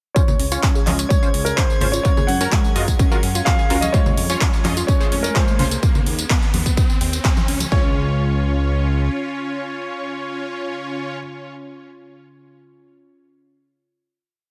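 An intimate grand piano with audible action noise carries the melody through this short, euphoric progressive house piece, softened by a low-pass filter and trailed by dub echo. Beneath it, a punchy four-on-the-floor electronic kick sits up front beside a big-room kit of metallic hats, claps and tambourine, while congas play a tribal loop in the background and a fat, detuned analog bass plays off-beat, pumping with the sidechain. A round, warbling analog pluck runs a 12-step sequence that drifts against the bar, and a detuned supersaw stab punches out dotted-rhythm chords; both pass through a filter sweep during the build-up from 0.2 seconds. An evolving wavetable pad morphs through phaser and reverb, a glassy high texture of drifting overtones hovers in the background, and an electronic riser enters at 3.6 seconds. Around 7.7 seconds the drums and riser fall away, and the piano, pad, bass and stab settle onto a final chord in an expansive, lightly reverberant space.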